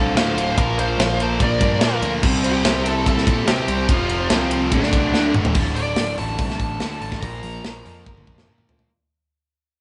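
Menacing and aggressive, this hard rock piece charges at 145 BPM in straight 4/4 in D minor, with a bright, biting overdriven lead guitar carrying the melody over a dark octave-fuzz lead guitar in the background that stops at 5.3 s, three picked rhythm guitars (an overdriven one in the background, a double-tracked high-gain one that drops out at 5.6 s, and a very quiet overdriven one) grinding out the riff, a punchy fuzz bass, and an up-front, tight metal drum kit with a rolled-off top whose fill leads into a second section that fades out from 5.6 s, the whole band playing live in a stone room with moderate reverb.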